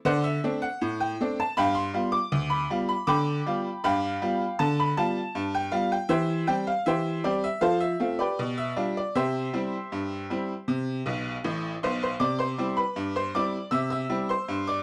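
The recording has a dark, warm production with a moderate studio reverb that gives a small sense of room. A lone tack piano, up front, plays a cheerful, lively ragtime passage in C major at 79 BPM in a straight 2/4, cut from a longer piece. Its metallic, jangly tone is percussive and bright, ranging from deep bass notes up into the high treble. The harmony moves from D5 through G7, C/E, F and G7/B to settle on C. A honky-tonk piano fill at 11.1 seconds leads into a return of the opening section at 12.2 seconds, and the piano plays until 14.8 seconds.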